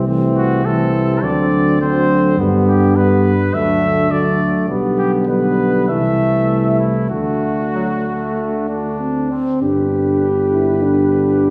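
A dark French horn with light vibrato, a trombone set in the background, a flugelhorn on a second line and a mellow tuba bass sounding up front open this noble, stately classical brass quintet passage, cut from a longer piece, in a freely rubato 4/4; a clear trumpet with light vibrato takes the melody from 0.4 seconds, and the whole group is heard from further back in a reverberant recital hall as the harmony arrives on G at 9.6 seconds.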